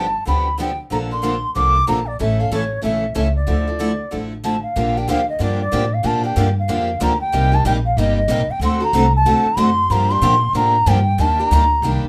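Acoustic string swing in the jazz manouche style, fiery and virtuosic, with a bright bamboo bansuri carrying the melody up front, its pure tone marked by vibrato, a crisp attack and lifted highs. Two picked steel-string acoustic guitars supply the accompaniment throughout, one of them showing fresh strings and finger squeak, while a woody, growly pizzicato upright bass sits up front beneath them. Moderate club reverb surrounds the group, and at 4.8 s the harmony moves into a new section over minor-seventh, sixth and major-seventh chords.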